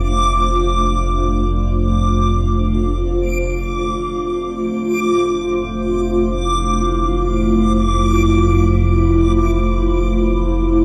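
A dreamy mix soaked in moderate plate reverb opens this ambient excerpt in free time, luminous and weightless in F major with tuning set to A4 = 441 Hz. A granular cloud pad holds sustained chords from A3 to C5, its blurred, full-bodied tone mellow and up front, carrying its own reverb, a subtle chorus and shimmer reverb. Beneath it, a round analog bass sits on F1, deep and dark, with a detuned, evolving character. High above, a backwards swelling texture hovers on D6, reversed and bright, lying lower in the mix and bathed in built-in and shimmer reverb. The harmony moves from Dm7/F to Fmaj7 at 4.8 seconds, and all three parts sound together throughout the 10.8 seconds of this fragment cut from a longer piece.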